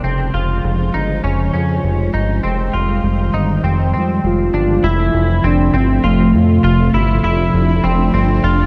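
In a straight 4/4, this blissful, dreamy dream pop excerpt rests on a fat, detuned sawtooth analog bass sitting up front, beneath lush, vintage string machine chords softened by ensemble chorus and a low-pass filter. A clean, picked semi-hollow electric guitar plays arpeggios through analog chorus and digital delay. At 4.3 seconds a round, octave-layered synth lead with vibrato carries the melody, and a barely audible bell-like celesta rings in around 5.1 seconds, all within a dark, warm production with light reverb.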